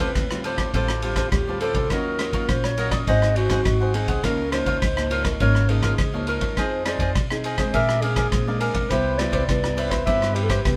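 A straight 4/4 samba and choro groove at 103 BPM moves with festive, sunny cheer, driven by an up-front vintage drum kit with a punchy kick, dark ride cymbal and rim clicks in a pumping small-room sound, over a woody pizzicato upright bass. A dark, classical-style clarinet carries the solo melody while a crisp, picked cavaquinho and a fingerpicked nylon-string guitar, its finger squeaks audible, fill in the harmony through chords such as Dm7, Ab7 and Cmaj7. The band plays live together in one studio room with a moderate ambience, heard here as a brief cut from a longer piece.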